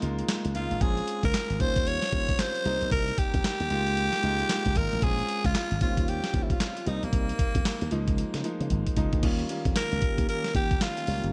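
A raspy, growling tenor saxophone takes the lead from 0.6 seconds over a punchy, slick new jack swing groove at 114 BPM, with 16ths swung and a 12-bit drum machine sitting up front, its thumpy kick, handclaps and gated-reverb snare sounding clean and sampler-like. A bright slap bass growls through an envelope filter beneath a clear, long-sustaining grand piano comping on chords like Db69, Bbm7, Eb13 and Cm7. After a drum fill, a shimmering, retro pulse-width pad with chorus and tremolo enters in the background at 9.2 seconds on an Eb7, in this short excerpt from a longer piece.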